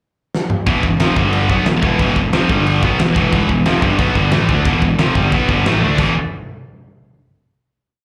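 Heavy metal at 181 BPM, dark and heavy, heard as a live club gig with light reverb: a big rock drum kit with a fat snare and punchy kick opens with a fill at 0.3 seconds, then from 0.7 seconds a scooped high-gain guitar up front and a compressed distorted guitar in the background, both with slapback echo, play a power-chord riff around E and G while a growly fuzz bass doubles it in driving eighth notes, before a final E5 chord at 6.0 seconds.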